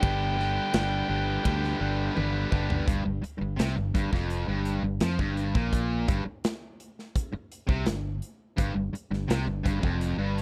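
This sunny, swaggering classic rock excerpt opens with the full band at once, led by a gritty, amplified harmonica that carries the melody with tongue slaps and a slapback echo before dropping out at 2.2 seconds. Beneath it, two bright, overdriven electric guitars play picked riffs, one placed up front and the other sitting a little lower in the mix. A fingered electric bass has a warm, direct-and-amped tone and sits forward alongside a big-roomed acoustic kit with a punchy kick, bright cymbals, a medium-tuned snare, hi-hat, ride and toms. A drum fill from 2.2 to 2.9 seconds moves the music from a G chord into an Fsus24 passage that runs to the end. Set at a straight 84 BPM in 4/4, the dry, close 1970s-style studio sound gives every part an immediate presence.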